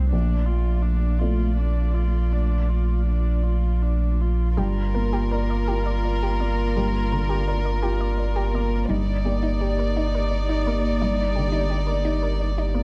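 Neoclassical piano and strings in G minor, this fragile, longing fragment moves at a slow, rubato 52-58 BPM in 6/8, counted in dotted quarters. From the start a felt-muted upright piano plays soft, mellow accompaniment with audible action noise and short sustain. Sounding with it from the first moment are a lone dark viola bowed sul tasto with an airy bow and vibrato, a studio string section holding sustained chords in the background, and a deep, thick saturated sub bass sitting up front. At 4.6 seconds a close, intimate chamber violin section takes the melody with light vibrato and a soft attack. At the same moment an analog pluck adds bright, detuned arpeggios with a noise layer, a filter sweep and a moving notch, treated with chorus and slapback echo. The harmony passes from Bbmaj7 to Gm7 and then Ebmaj7/G, framed by light reverb and a dark, warm production.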